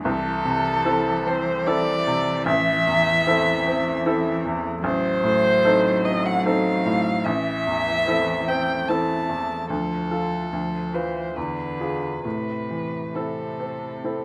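Cello and a bright baby grand piano open this slow, romantic piano-trio movement in A minor, a violin joining them at 0.1 seconds. The mood is yearning and melancholic, moving in a rubato 3/4 at roughly 66-77 BPM. The violin carries the melody, its focused, vibrato-rich bowed tone sitting up front with a smooth top. Beneath it the cello draws a second line, rich and even, close but softer in the balance. The piano supplies the accompaniment with a brilliant, natural sound and long sustain, its harmony passing through a diminished chord and a tense E7b9 before settling back on A minor. Light reverb gives a modest sense of space, and this short passage is cut from a longer piece.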